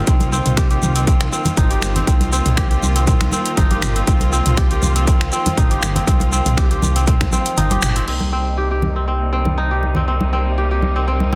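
A dense, heavily limited mix with light small-room ambience carries this hypnotic, spiritual afro house excerpt, where ringing, fingerpicked kora arpeggios with digital delay and biting, distant bowed strings with vintage 12-bit sampler grit pump over a smooth, gliding sawtooth synth bass, while a punchy, overdriven electronic kick, a deep house kit with metallic hats, snaps and toms, grainy shekere and close, dry congas drive the groove until the kick stops at 7.3 seconds, the band hits an accent at 7.8 seconds and a filter sweep takes over the strings from 8.1 seconds.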